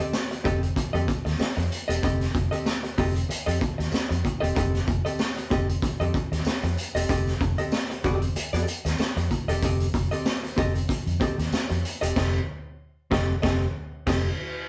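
Funky and playful, this short funk excerpt grooves with a lightly swung sixteenth-note feel on an F9 chord, played by a band together in one room with light reverb. A raw garage drum kit sits up front with a gritty, saturated tone, a boomy kick and high-tuned snare among its crash, hi-hat, kick and snare. A dark, foam-muted fingered bass enters at 0.5 seconds with a round, punchy sound, a clean, compressed hollow-body jazz guitar comps with a hollow character, and a jingly tambourine lingers in the background until 12.0 seconds, just before a band accent at 12.2 seconds.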